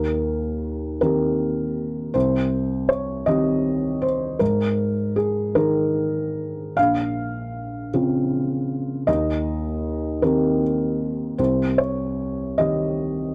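A felt-muted upright piano carries this melancholic, wistful fragment of neoclassical minimalist piano on its own for the full 13.3 seconds, its thick felt giving the notes a dark, mellow softness. The playing moves in a slow, rubato 6/8 at about 52 BPM, counted in dotted quarters, and spans from Bb1 in the low register up to F5. The harmony drifts through Eb6, Cm, Absus2 and Bbmadd9 before returning to Eb6 and Cm, which deepens the passage's wistful mood. The piano sits up front, and the mechanical noise of its action is clearly audible, which adds to the intimate feel. The sound is a dry, close 1970s-style studio recording with a small room ambience, and the passage is cut from a longer piece.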